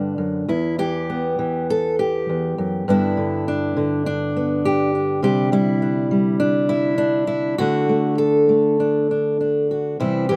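A fingerpicked steel-string acoustic guitar plays alone from 0.0 to 10.4 s in this short folk excerpt, up front with audible finger squeaks, drifting in a loose rubato 4/4 through Em, G, Csus2 and D across a range from E2 to A4, its dry open-air sound carrying a nostalgic yet hopeful mood.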